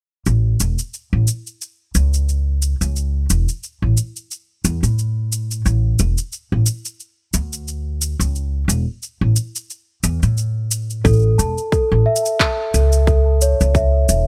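A woody, thumpy pizzicato upright bass sits up front under a filter sweep in this hopeful, pastoral folktronica fragment at 89 BPM in A major, moving from A to Dsus2 with a gentle swing and tape-warm electronic shaker and handclaps in a small room, until at 11.0 seconds a tight electronic kick and a delicate, bell-like celesta with soft felt hammers and delay join for a sweet lift back to A.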